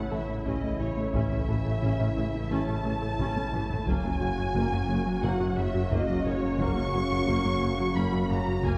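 A lush violin section carries the melody with vibrato, a second violin line and expressive violas sit behind it, and a mellow French horn section, a clear trombone section and a swirling, phased analog pad hold sustained chords over A, then F# from 3.9 seconds. This vast, tense hybrid orchestral and electronic film cue moves at 88 BPM in a straight 4/4. Beneath it, a smooth synth bass riff, a deep saturated sub bass, very quiet cellos, woody double basses and a tuba anchor the low end, while a punchy, detuned unison pluck plays soft arpeggios and a taiko ensemble enters at 0.5 seconds with a heavy-stick fill at 3.2 seconds, all set back in a roomy scoring-stage reverb.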